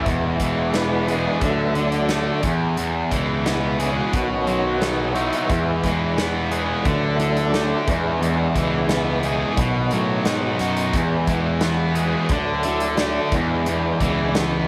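A lightly overdriven tonewheel organ leads this confident, sunny classic rock passage in E mixolydian, its full chords churning through a fast rotary speaker with vibrato and taking the solo spotlight from 0.1 seconds. Two picked electric guitars sit up front beneath it: one crunchy and warm with overdrive, the other tight, bright and distorted, both driving riffs at a straight 88 BPM in 4/4. A fuzz-laden picked electric bass, direct and amped, anchors the low end. A big acoustic rock kit enters at 0.1 seconds with a punchy kick, a medium-tuned snare and hi-hat, sounding airy and polished in a big room. The harmony cycles through E, D and B, and the whole band is bathed in a moderate echo chamber reverb, with the passage cut from a longer piece.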